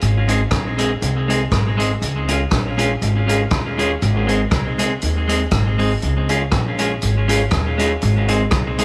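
Upright bass and a swinging big-band drum kit open this joyful, bouncy ska clip, which is cut from a longer piece. The bass is plucked, woody and warm, with steel strings, and sits up front, while the kit's hi-hat, rim click and boomy kick carry a roomy, slightly distant character. At 0.3 seconds a clean electric guitar joins. Its picked, dark tone is close and present, and a tape echo trails behind it. The harmony sways back and forth between two chords over a light swing. The whole clip sits in a small room with light reverb.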